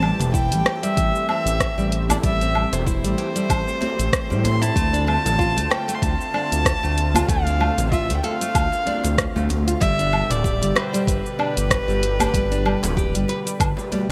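An intimate, bowed kamancheh carries the melody up front in this mystical organic downtempo excerpt, its airy tone touched with light vibrato, portamento and delay, above a woody, fingerpicked nylon-string guitar playing delayed arpeggios. A vintage analog pad warbles in the background with chorus and sidechain pumping, while a smooth, gliding sawtooth synth bass with vibrato pumps up front through Am7, Dm7 and G. A layered deep house kit of cabasa, dark hi-hat, rim click and woodblock swings lightly, joined at 0.2 s by a distant djembe with metal rattles and at 0.3 s by an overdriven electronic kick, all set in a lush hall reverb with a bright 1980s-style digital sheen.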